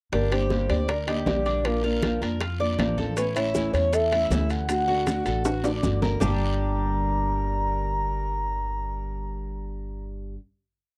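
Cuban son and guajira with a sultry, danceable feel, where a pure, breathy sine lead with chorus sings motif-based phrases over fingerpicked nylon-string guitar, a metallic tres guajeo, an up-front woody upright bass playing tumbao, and background bongos, congas, ringing timbales, raspy guiro and grainy maracas (joining at 3.2 s) until a drum fill at 5.5 s drops the percussion into a final G minor chord from 6.2 s in a dry, close 1970s-style studio sound.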